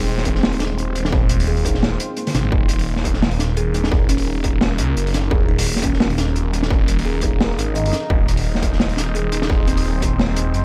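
A swirling, thick detuned saw bass runs up front through this half-time drum and bass cut at 172 BPM in Eb dorian, its sawtooth edge saturated and bright under a phaser. A crunchy breakbeat kit of hi-hat, medium-tuned snare and toms sits close and gritty with a rolled-off top, while a distorted electronic kick, tape-toned and re-recorded in a small room, enters at 0.3 seconds and drops out from 2.2 to 2.5 seconds around a drum fill at 2.3 seconds. Behind them, a deep, moody ambient pad holds evolving, mellow sustained chords with chorus, reverb and sidechain pumping, moving from Ab/Eb to Ebm and back. A woody, hollow-toned kalimba rings out airy arpeggios through tape echo. The mood is cinematic and spacious, with a 16th-note swing, tuning set to A4 = 441 Hz, and studio ambience filling the room in this section cut from a longer piece.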